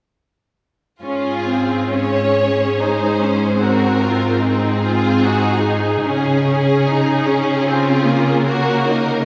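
Bathed in a long church reverb, this serene, tender excerpt from a slow romantic orchestral movement in Db major drifts at 67-77 BPM in a rubato 3/4: a focused, lush violin section carries the melody over a second violin line with soft attacks and expressive bowing, while an up-front, even viola section supplies the accompaniment and a smooth cello section holds the bass, every string section singing with vibrato from 1.0 to 9.2 s over chords moving from Db/Ab through Ab9 to Gb/Db.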